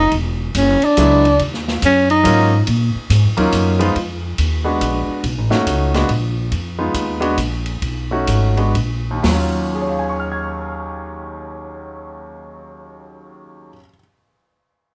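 Swung eighths in 3/4 at 120-141 BPM drive this smoky, late-night small-group jazz excerpt in Eb minor, where an up-front tenor saxophone with vibrato and scooped notes states a brief melody until 2.6 s, while a woody pizzicato upright bass and a clear, intimate baby grand piano with audible action noise and long sustain carry on over an open kit with dark cymbals and a boomy kick, set in a moderate club reverb as the tempo slows from 6.5 to 9.2 s.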